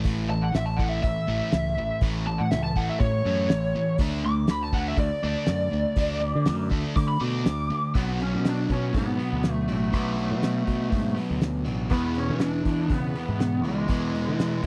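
This gritty, brooding classic rock excerpt opens at once on a pair of sludgy, overdriven guitars picking a riff in B dorian at 121 BPM in a straight 4/4, one of them sitting in the background. Underneath, a growling fingered electric bass with bright, punchy overdrive sits up front beside a cloth-damped, thuddy drum kit, whose fat snare, tight kick and hi-hat have a dark, rolled-off top. From 0.3 seconds a lead guitar through a small cranked amp takes the melody, its dark, lo-fi overdrive coloured by slapback echo, and it plays as a solo through the first section over chords moving from A to D5. At 7.9 seconds the harmony shifts to Bm7 and then E, and a double-tracked, brighter overdriven guitar joins with its own picked riff in the background. The sound is dry and close, like a 1970s studio room with little reverb.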